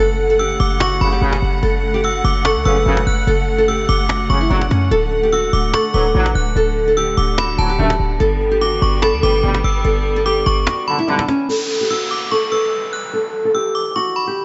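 Half-time trap at 146 BPM in 4/4 sets a dark, menacing hip hop mood, as a woody, hard-handed cajon and a punchy, tight 808-style bass sit beneath an up-front fingerpicked nylon-string guitar melody with audible finger squeak, a ringing, inharmonic FM bell line treated with chorus and delay, clear bowed strings holding sustained chords, and mellow, distant brass stabs over F#m, D and G, until the rest falls away by 11.5 seconds, leaving the guitar under a filter sweep alongside the bell and an electronic downlifter until 14.4 seconds.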